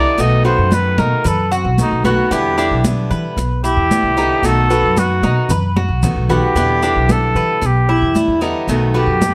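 Nostalgic and sultry, this short cut from a longer Cuban son and guajira piece moves at 113 BPM in a straight 4/4, set in E minor and swaying between B7 and Em7. A breathy trumpet carries the melody as a solo throughout, up front with a soft attack, vibrato and an intimate, whispered, vintage tone. Beneath it, a woody, thumpy upright bass on gut strings sits equally forward, while a picked acoustic archtop guitar adds boxy accompaniment with audible finger squeak. A Cuban tres spins metallic arpeggios on its doubled strings, and from 0.2 seconds high-tuned, thin-skinned congas and grainy, mellow maracas fill in the background, with a drum fill arriving at 5.8 seconds. Light reverb and a dark production give the whole a hazy, late-night glow.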